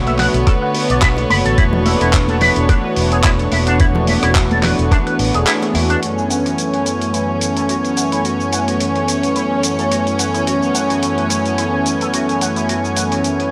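Sleek and cosmic, this nu-disco excerpt rides a 108 BPM groove in 4/4 with a light swing on the sixteenths, set in F# minor. A smooth, detuned sawtooth pad sits up front with a soft attack and long release, treated with chorus, analog delay and sidechain pumping, while a reedy, gut-string violin section holds close, lightly vibrato-touched chords that pump along with it. An electric guitar with an envelope filter plays a dark, clean, picked riff through analog chorus and a low-pass filter, and a bright, amped fingered bass with its own envelope filter drives the low end until about 5.9 seconds. The dusty, tape-kissed drum kit brings cabasa, handclaps, hi-hat and rim click in a small room, joined by soft-handed congas and bongos in the background through the first section and a thumpy, gritty electronic kick that plays from 0.5 to 5.0 seconds. The harmony moves from Bm9 to E7sus4 before settling on F#m11 as the second section opens at 6.0 seconds, all captured in a dry, gritty hardware sound with light digital ambience.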